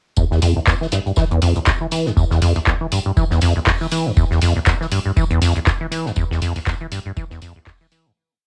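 Acid house at 120 BPM in 4/4 with a light 16th-note swing, this short, hypnotic and driving piece sits in E phrygian and runs as one continuous groove from 0.2 seconds. A squelchy, resonant sawtooth acid bass carries the riff up front, an accented 16-step line with slides between E2 and E3, thickened by tube saturation and analog chorus with sidechain pumping while a filter sweep runs across it throughout. An electronic kick drum lays down a deep, tape-softened four-on-the-floor pulse until 7.8 seconds. A punchy analog drum machine, overdriven and forward in the mix, adds programmed open hats and a clap backbeat. Further back, a compact cocktail drum kit contributes a dry, natural looped breakbeat with edits, featuring a high-tuned snare, hi-hat and tambourine, thinned by high-pass filtering and pumping on the hats and percussion. The whole track has a homemade cassette character with light reverb and fades out from 5.5 to 8.2 seconds.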